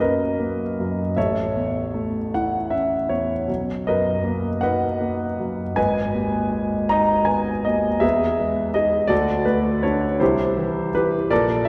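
Moving in 6/8 at roughly 50-56 beats per minute on the dotted quarter, this impressionist classical solo piano piece breathes with a free rubato that keeps the pulse loose and unhurried. The mood is serene and hazy, set in B mixolydian with the instrument tuned to A4 = 441 Hz. A single grand piano carries everything from 0.0 to 11.7 seconds, ranging from G#1 up to A#5, its tone clear and intimate with audible action noise and long sustain that keeps it present and up front. The harmony drifts from Bmaj9 through A, Bmaj7, G#m and Emaj7 before sliding to D at 9.1 seconds and C at 10.2 seconds, lending the close a gently unsettled color. A wet church reverb with a 2.7-second decay surrounds the piano within a dark, warm production, and the passage is cut from a longer piece.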